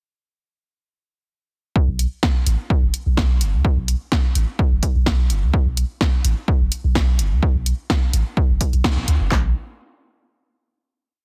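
A complete minimal techno piece in a sparse, cool mood begins at 1.8 seconds with an analog drum machine laying down a four-on-the-floor kick with a punchy, tape-warm snare and handclaps, sitting up front in the mix. Almost immediately a deep sine sub bass joins with a rolling staccato groove, its fast, pitch-drop attack and sustained notes thickened by tube saturation and pumping against the kick through sidechain compression. A second, quieter drum machine part adds programmed closed hi-hats and a backbeat snare, its analog tone set back behind the main kit. The whole band strikes an accent at 8.8 seconds before the groove gives way to a final chord from 9.3 seconds. The sound is dry and close, with little reverb, and the master is dense and heavily limited in a modern style.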